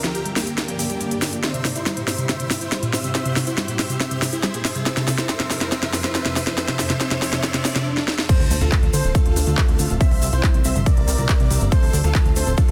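Uplifting trance at 140 BPM in D minor, soaring and bittersweet, where a huge, euphoric supersaw lead with tape echo and a lush, bright unison pluck arpeggio under a filter sweep ride a shimmering, ethereal pad, a cracking techno kit with drum fills, a grainy tube shaker and a very quiet riser and swell through an 8.3-second build-up over Gm, C/G and F, until the drop hits at 8.3 s with an impact, a punchy up-front electronic kick, a funky plucky analog bass entering at 8.4 s and a dark baby grand piano in the background, with the synths, piano and bass pumping against the kick over Dm7 and C in a dense, heavily limited mix.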